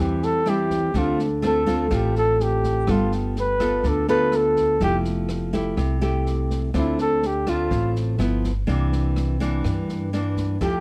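A mellow flugelhorn solo with light vibrato and a soft attack opens this intimate, wistful bossa nova in D minor at 124 BPM, up front beside fingerpicked nylon-string guitar and a woody, dark pizzicato upright bass, while a natural small-room jazz kit with a boomy kick, rim click and medium-tuned snare joins at 0.2 seconds, all captured in a dry, close 1970s-style studio sound across this short excerpt cut from a longer piece.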